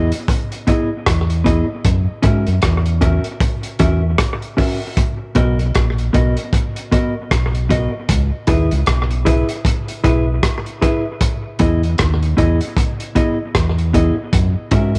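A mellow, clean electric guitar with dub echo and a deep, round fingered electric bass open this laid-back, uplifting roots reggae excerpt at 77 BPM in B major, swung on the sixteenths and moving through jazzy seventh chords such as Emaj7, F#7 and Bmaj7. A crunchy breakbeat kit of hi-hat, punchy kick and rim click comes in at 0.1 seconds, its gritty, saturated small-room tone dark and rolled off at the top, with slapback echo. Bass, drums and compressed guitar all sit up front in a studio ambience.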